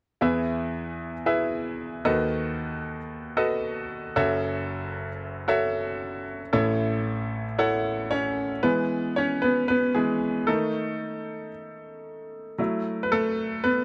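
A brilliant, up-front grand piano with short sustain carries this hopeful pop fragment at 114 BPM in E major, moving through E, B7/D#, F#m7 and A before playing alone from 8.6 s, all captured in a dry, close 1970s-style studio sound with a touch of booth ambience.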